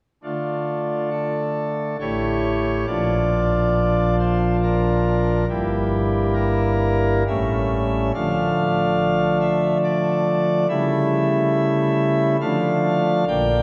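A wet church reverb, lingering for about 3.4 seconds, surrounds this recording, which is heard from further back in the room. It is a dark, grave classical chorale-style passage in D minor, cut from a longer piece, moving in 3/4 at around 70 BPM with a flexible, rubato feel. A solo pipe organ plays from 0.2 to 13.6 seconds, its nasal cornet stop sitting up front in a romantic voicing that spans G1 to G5. The harmony opens on D minor and passes through A7, B-flat and a diminished chord over G before reaching A7 again at 7.3 seconds. It settles back on D minor, touches A7 with C-sharp in the bass, and comes to rest on D minor at 12.4 seconds.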